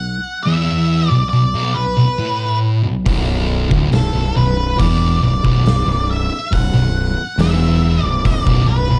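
Two picked, distorted fuzz guitars grind out a heavy B minor riff on a single Bm chord, one of them set back in the mix, while a dark octave-fuzz lead guitar with slapback echo carries the melody above them in this hypnotic 69 BPM stoner and doom metal passage cut from a longer piece, until at 3.1 seconds a growly, overdriven fingered bass pushes up front and an oversized, low-tuned acoustic drum kit with a punchy kick, gritty saturation and a bright stone-room sound joins on hi-hat, kick and snare, all within a dark production with light reverb and small room ambience.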